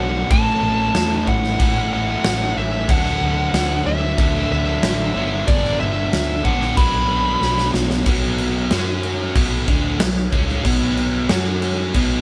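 A straight 4/4 classic rock groove drives this gritty cut, with a huge arena drum kit of punchy kick, fat snare and bright cymbals up front in a pumping hall, a sludgy double-tracked distorted guitar riff, a round hollow-body bass underneath, and a smooth, dark overdriven lead guitar melody that stops at 7.7 seconds as a drum fill carries the band, playing live together in one room with light reverb, into the closing section at 8.1 seconds.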